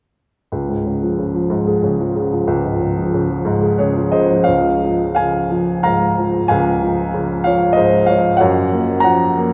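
Flowing in a rubato triple metre, this short passage from a longer classical piece features a lone upright piano, woody and natural in tone and placed up front, playing lyrically from 0.5 to 9.5 seconds across a broad span from low bass to high treble. The hopeful, warm mood shifts into a second section at 4.5 seconds, with the harmony turning to a new chord at 8.4 seconds. A long, wet cathedral reverb surrounds the piano, giving the sound the resonance of a church or concert hall.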